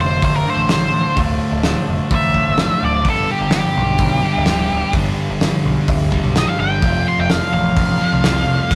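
An octave-fuzz lead guitar solo sits up front from the opening, its dark, distorted melody riding over a thick fuzz riff, a growling overdriven bass and clean, twangy fingered arpeggios washed in spring reverb that drop out at 3.0 s, in this bittersweet, cathartic stretch of quiet-loud alternative rock at 127 BPM. A loose indie drum kit with a fat snare, tight kick and dark cymbals pumps in a stone room, while a crunchy overdriven guitar riff joins in the background at 3.0 s as the chords move from Dm7 to G and then F. The rough rehearsal-room sound carries a tube-saturated grit throughout this cut from a longer piece.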